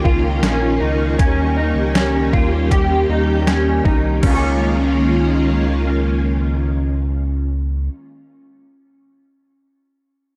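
A straight 4/4 pulse at 79 BPM comes from a detuned 8-bit digital drum machine with a thumpy kick, medium-tuned snare, hi-hat and crash, re-recorded in a large room, and it drops out at 4.4 seconds while the other parts carry on. This floating, blissful dream pop excerpt sits in Db lydian, tuned to A4 = 437 Hz, moving from a Db69 chord to Eb7 at 1.2 seconds and back to Db69 at 4.2 seconds as the second section begins. A shimmering, vintage string machine set to violins holds up-front sustained chords with a soft attack and ensemble chorus. Beneath it, a round analog bass, deep and evolving, anchors the low end. An electric guitar through a small old amp plays picked arpeggios with a slightly broken-up, lo-fi tone, coloured by ensemble chorus and tape echo. Light reverb sits over a dry, gritty hardware recording, and the passage is cut from a longer piece.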